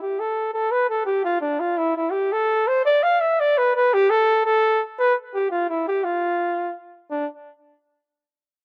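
A mellow flugelhorn with vibrato plays a spirited, driving Celtic folk melody alone in a straight 6/8, ranging from D4 to F5 in a classical style until 7.3 seconds; it sits up front yet sounds distant and roomy, with slapback echo and light reverb in an open-air recording cut from a longer piece.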